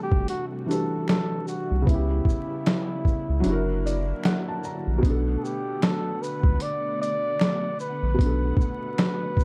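Lo-fi hip hop in B minor at 76 BPM with a swung, hazy and reflective feel, this short excerpt sets a mellow flugelhorn melody with light vibrato and scooped notes, softened by a low-pass filter and plate reverb, over a felt-muted upright piano with audible action noise that adds a fill at 3.4 seconds, warbling vintage string-machine violas with ensemble chorus, a deep, round dub sub bass, a gritty, pitched-down boom bap drum kit with a thumpy kick up front, and a close, dry finger snap in the background, all wrapped in a dark production with vinyl crackle as the chords move from Em11 through C#m7b5 and F#aug7 to Bm7.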